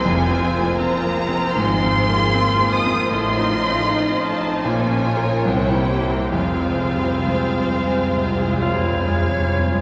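Awash in a cathedral-like reverb, this lyrical, passionate classical passage sounds as if it was captured in a church or concert hall, and it is cut from a longer piece. The tempo breathes freely in a rubato four, as a brilliant grand piano shares the melody with a lush violin section whose vibrato-rich tone has a focused, smooth top. Beneath them, a darker second violin line with a soft attack and a rich, distant viola accompaniment sit in the background, while a clear, very quiet cello section and an even double bass section anchor the low end until 8.9 seconds. Timpani struck with hard mallets sound close and articulate at the start, then return with a fill from 6.4 seconds as the harmony settles back onto its home minor chord. At 8.6 seconds a silver concert flute enters on a single pure, vibrato-tinged note as a second line.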